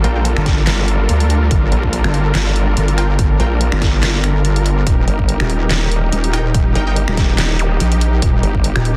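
Heavy, aggressive wobble dubstep at 143 BPM in a swung half-time feel in G minor, where two saturated, up-front wobble basses, one square-and-sine and detuned and the other nasal with a resonant formant-filtered vowel sweep, both with chorus and overdrive, roar beneath huge, lush supersaw chords that pump against the sidechain through a low-pass filter as Gm7 moves to Eb at 4.9 s, while bold orchestra-hit-like synth stabs with ring modulation, built-in reverb and digital delay flash in the background, a punchy layered electronic kick joins at 0.5 s alongside a dubstep kit of finger snaps, handclaps, hi-hat and deep snare recaptured in a large room, and a very quiet zap flickers at 7.6 s, all within a dense, heavily limited modern master cut from a longer piece.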